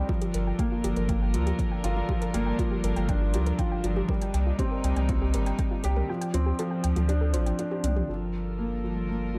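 Dark, cinematic piano-and-strings electronica in G minor at 120 BPM opens with a distant, reedy string section holding sidechain-pumped chords, a soft, warbling pluck arpeggiating in the background through chorus and delay, a worn, mellow grand piano riff up front with audible action noise, and a round sine sub bass, joined at once by a punchy, overdriven electronic kick and a deep house kit with metallic hats and filtered toms; the kick drops out at 6.1 seconds before a drum fill leads back to Gm7 at 8.1 seconds in this intimate passage cut from a longer piece.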